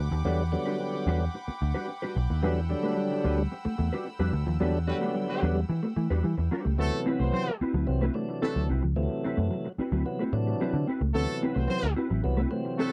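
Strutting, funky 110 BPM funk in D mixolydian, cut from a longer piece, where a round, foam-muted picked bass sits up front beneath lightly overdriven tonewheel organ stabs with key click and slow rotary speaker, a clean, compressed guitar with ensemble chorus comps while a second dark guitar with spring reverb enters at 2.4 s on a background riff, soft sul tasto strings float above until 6.7 s, and a roomy, distant horn section with light vibrato adds a second line from 4.9 s, all captured in a dry, close 1970s-style studio sound as the band accents lead from Em9 into D13.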